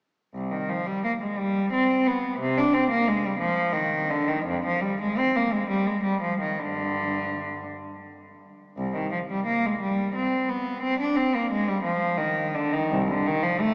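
This classical excerpt is a baroque-style suite movement for solo cello, grave and solemn in character, set in C minor. It moves at a slow 57 beats per minute in 6/8, with uneven beats and a free, rubato feel. A single bowed cello carries the whole passage from 0.3 to 13.7 seconds, ranging from C2 up to D4. Its gut-string tone is reedy and slightly nasal, shaded with light vibrato in a period style. The cello sits up front, yet a long, wet cathedral reverb wraps it in the resonance of a church or concert hall, while the overall sound has a small-speaker quality. The music is cut from a longer piece.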